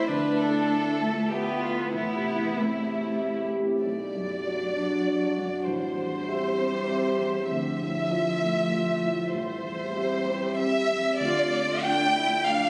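Reflective and melancholic, this neoclassical fragment in a rubato 3/4 around 97 BPM sets an expressive, vibrato-laden violin section up front on the melody over a smooth solo cello second line, a dark, boxy concert grand with deep bass and long sustain, and a nostalgic, warbling lo-fi pad washed in chorus and phaser, with a focused viola slipping in quietly in the background at 11.2 s, all heard through a huge ambient reverb as if captured on a phone in the room.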